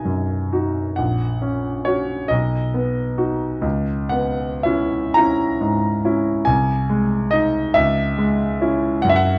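Classical romantic nocturne for solo grand piano in 6/8 with rubato, dreamy and serene, the clear, smooth, up-front piano with short sustain spanning A#1 to A#5 through chords moving from B to F#/A#, C#m7 and on to C#m, all heard through light reverb and worn, warbling old cassette tape with pitch drift in this brief cut from a longer piece.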